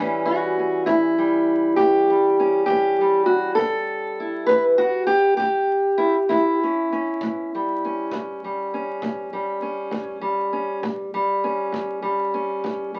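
Laid-back and swaggering, this short excerpt of acoustic country blues rolls along at 66 beats per minute in a straight 12/8 lilt, settled in A mixolydian over a single A7 chord. A fingerpicked steel-string parlour guitar carries the melody up front, its dark, boxy tone ranging from A2 to B4 across the full 13 seconds. A punchy kick drum, played with brushes, enters at 0.9 seconds and stays tucked in the background, giving the duo a quiet pulse beneath the guitar. The performance sits in a modest small-room reverb, and the sound carries the character of a very old 78 rpm record, with vinyl crackle running through it.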